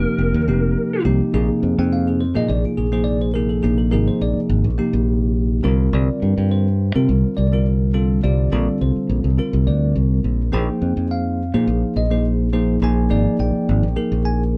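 A straight 4/4 groove at 104 BPM drives this funky, soaring electric jazz fusion piece in Bb mixolydian, cut from a longer performance, with a fingered electric bass that sits up front, growly and bright, moving through suspended ninth chords from F9sus4 to Bb9sus4 and C9sus4. A bell-like tine electric piano, clean and direct, carries the accompaniment throughout, while a lead guitar through a small cranked amp offers only a brief overdriven, lo-fi melodic phrase on Bb4 before stopping at 1.0 seconds. The band sounds as though it is playing live in one room, touched by light reverb.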